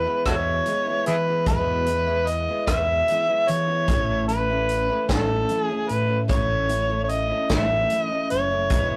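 In a straight 6/8 pulse, this jangly folk rock and heartland rock fragment puts a gritty, overdriven harmonica up front with vibrato, scooped notes and tongue slaps over a shimmering, octave-doubled twelve-string acoustic guitar, an amped fingered electric bass and a natural country drum kit (punchy kick, medium-tuned snare, hi-hat and rim click) that joins at 0.3 seconds, moving from E to A at 3.9 seconds within a rough rehearsal-room sound with tube saturation and moderate reverb.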